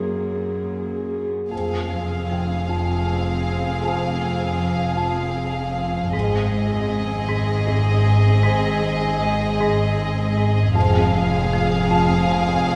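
A slow, straight 3/4 pulse at 78 BPM carries this eerie, uneasy cinematic fragment: a dark, intimate viola section, very quiet rich cellos and a muffled felt-muted upright piano with audible action noise open together, then at 1.5 s floating sul tasto violins split into a melody and a second line, distant French horns sustain chords, a vintage, band-limited hard-mallet marimba riff sits in the background and a double bass section deepens the low end, the piano dropping out at 10.8 s, the whole scene set inside a cavernous cathedral reverb.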